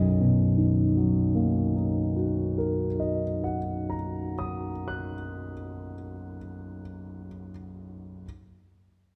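Classical impressionist solo piano in B major, luminous and serene, unfolds in a slow, rubato 9/8 at roughly 27-29 beats per minute counted in dotted quarters. This brief excerpt, cut from a longer piece, lasts about 8.3 seconds and opens on a Bmaj7 chord. A warm concert grand carries everything alone, ranging from B1 up to F#6, with deep bass, long sustain and audible action noise that lends an intimate, up-front presence. Its natural tone sits within a wet concert hall reverb of 1.9 seconds, giving the sound a soft halo of space. The tuning rests at A4 = 439 Hz, slightly beneath standard pitch.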